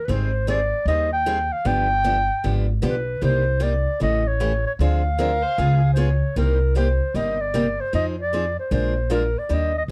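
Dark, lightly reverberant production frames this swinging, virtuosic excerpt of acoustic string swing at 153 BPM in C minor, where a breathy, whispered subtone clarinet carries the close, intimate melody with vibrato and scooped notes over a boxy picked archtop guitar and a thumpy, woody pizzicato upright bass on gut strings, while a bowed violin slips in briefly from 5.2 to 5.8 seconds with expressive portamento.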